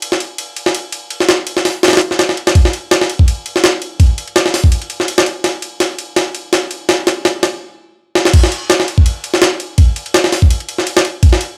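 A jungle sampler-style drum kit drives this short drum and bass excerpt, its kick, snare, hi-hat, ride and crash sounding gritty, compressed and pitched up, with a thumpy kick and a high-tuned snare sitting up front. The tempo is 166 BPM in 4/4 with a light swing on the sixteenths, giving the frenetic mood an atmospheric edge under light reverb. After a brief opening, a build-up starts at 2.6 seconds, with a drum fill from 5.4 seconds. The kit then stops until the drop lands at 8.3 seconds, carrying the drums through to the end. The tape-warm, sampled character of the kit gives the whole passage a rough, crunchy texture.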